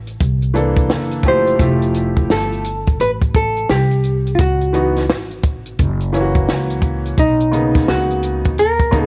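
A nocturnal, mellow jazz-hop excerpt with a swung 4/4 hip hop feel, built on a dry, close-sounding cocktail drum kit with a high-tuned snare and punchy kick, underpinned by a woody, pizzicato upright bass that starts things at 0.0 seconds. A brilliant upright piano with long sustain joins at 0.5 seconds, and at 1.3 seconds a dark, clean hollow-body jazz guitar takes the picked melody up front, both piano and guitar carrying a cassette-tape character over rich chords such as C13, Fmaj9 and C#m11. The room is nearly dead, giving the home cassette recording an intimate, close feel.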